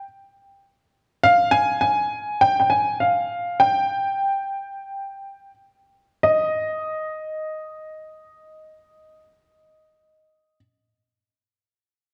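A dark, warm production sets a lone upright piano up front, its woody, worn, slightly detuned tone carried by a moderate scoring-stage reverb. The piano enters at 1.2 seconds with a wistful, yearning folk melody between Eb5 and Ab5, in a straight 4/4 feel that slows until 6.2 seconds before moving into a new section. Cut from a longer piece, this brief passage ends with the piano falling silent at 10.6 seconds.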